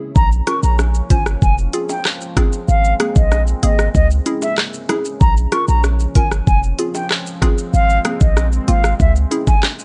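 A deep, moody ambient pad with chorus, reverb and sidechain pumping opens this sunny, summery dancehall excerpt at 95 BPM in Ab major, joined at 0.2 s by a pure concert flute melody with vibrato and analog delay, a boomy 808-style bass and an up-front electronic island pop kit of knocking kick, smooth hi-hat, handclaps, rim click and shaker, while a hollow, bouncy square pluck with warbling chorus adds accompaniment and tight, high-tuned bongos sit in the background over a repeating Bbm, Fm, Abadd9, Dbm progression.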